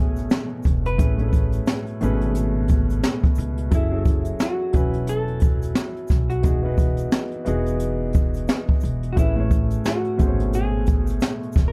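A dark, lightly reverberant lo-fi hip hop excerpt at 88 BPM with a dreamy, nostalgic mood and a swung feel, where a clean, picked hollow-body jazz guitar carries the melody over an intimate upright piano with audible action noise and long sustain, both filtered and bathed in plate reverb, a thumpy pizzicato upright bass, an up-front brushed drum kit with a boomy kick and high-tuned snare, and a grainy tube shaker tucked in the background, the drums and shaker entering at 0.2 s as the chords move from Amaj9 through F#m9 and Emaj9 back to Amaj9.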